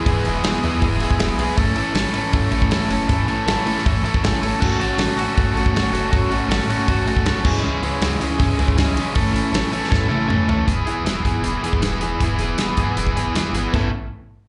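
A live-club sound with light reverb and a dulled top end carries this carefree, jangly indie rock excerpt in A major at 158 BPM, where a bright, overdriven picked guitar riff sits up front beside a slightly broken-up guitar with analog chorus and slapback echo, over a glossy, nasal chorused synth bass and a loose, acoustic drum kit with a tight kick, whose fill at 9.9 seconds leads into a new section at 10.7 seconds.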